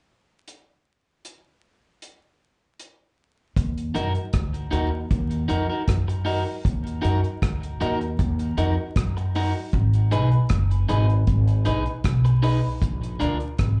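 The deep reggae drum kit opens this meditative, laid-back roots reggae excerpt alone at 0.5 seconds, its dry, dark sound up front with a tight kick, hi-hat and rim click over a rolled-off top. At 3.6 seconds a pizzicato upright bass joins, woody and growly on steel strings, sitting up front as the harmony settles on Eb minor at a relaxed 78 BPM in straight 4/4. Just after, an electric guitar at the edge of break-up adds picked, compressed accompaniment, slightly broken-up and bathed in dub echo, plate reverb and slapback echo. Alongside it, a dark upright piano plays mellow, boxy stabs with a slightly detuned character, also carrying plate reverb and slapback echo. The chords move to Ab minor and then Bb, heard as a live gig through the venue's PA with club reverb, vinyl crackle and a dulled top end.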